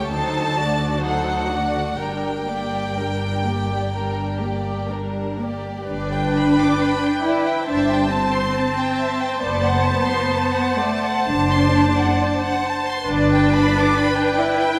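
Set in a moderate concert-hall reverb, this melancholic, solemn slow romantic movement for string orchestra, cut from a longer piece, unfolds with rubato as a focused, vibrato-rich violin section carries the melody over a close, expressive second violin line, smooth and even violas, a warm, distant cello section and a lush double bass section, with the harmony brightening at 5.9 seconds and the basses dropping out at 13.8 seconds.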